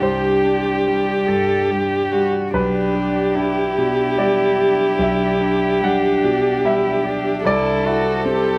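A rubato 3/4 pulse at 73 BPM carries this longing, fragile neoclassical excerpt tuned to A4 = 442 Hz, where a dark, woody solo violin sings the melody up front with vibrato, sul tasto bowing and plate reverb, a warm, intimate cello traces a soft-attacked, airy second line, a clear concert grand piano with deep bass supplies open accompaniment through Csus2, G/B and Am/C, and a warbling, lo-fi, detuned tape-like pad with chorus sustains mellow, nostalgic chords in the background, all within a moderate studio reverb.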